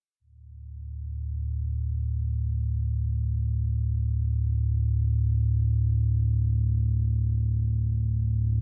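In free time, this cavernous, unsettling dark ambient fragment is cut from a longer piece and carried by a single deep, rumbling drone that plays alone from 0.7 to 8.6 seconds, sustained between D2 and A2. Up front and ominous, the drone has a wave-folded edge, a slow attack, a long release and its own reverb. The whole sits in a wet cathedral reverb with a 6.2-second decay, colored by worn old cassette tape whose warbly pitch drift lends a vintage unease.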